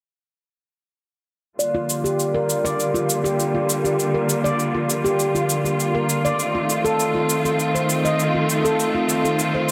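This organic downtempo excerpt in G minor moves at a hypnotic 100 BPM in straight 4/4, with a lush, bowed studio string section holding smooth, vibrato-rich chords from 1.6 seconds while a filter sweep shapes its tone. A close-miked handpan of nitrided steel, played with the fingertips, joins at 1.7 seconds with ringing, meditative arpeggios softened by a low-pass filter and tape echo. An electronic, layered cabasa keeps time, and a metallic bronze singing bowl struck with suede rings in the background with slow beating, all set in a moderate hall reverb over a Gm7 to F7 change.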